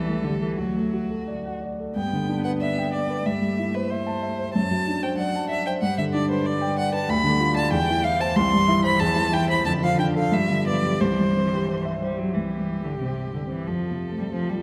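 A dark, mellow grand piano sits up front from the opening moment beside a focused, vibrato-rich solo violin carrying the cheerful, spirited melody and a smooth-topped bowed cello singing a second line beneath, all three playing through this quick, rubato classical-period piano trio fragment in 2/4, cut from a longer piece and bathed in a wet concert hall reverb.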